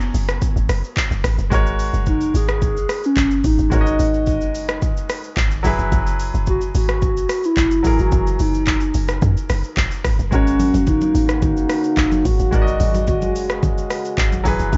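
A straight 4/4 amapiano groove at 109 BPM in G# minor carries this soulful, hypnotic excerpt, where a hollow, woody clarinet-like synth lead with chorus and delay sings over a clear baby grand piano, a deep, round log drum bass and an up-front afro-pop kit of deep kick, crisp hats, handclaps, rim click and shaker, moving between F#9sus4 and G#9sus4 before a mellow French horn section enters at 10.3 seconds and ringing, close congas sit in the background from 10.6 seconds, all under a worn, warbling cassette-tape ambience with dulled highs.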